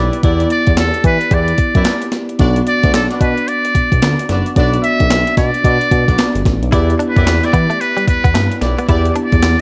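Light digital ambience frames this slick, confident new jack swing excerpt, where an up-front, overdriven 12-bit drum machine with a thumpy kick, snare, hi-hat and handclaps in gated reverb swings over a smooth, detuned synth bass. A mellow tine electric piano with subtle chorus and the stabs of a horn section support a buzzy, breathy, intimate muted trumpet melody that enters at 0.5 seconds. At 6.7 seconds a bright, twangy clean electric guitar riff with analog chorus joins as the harmony returns to Em7.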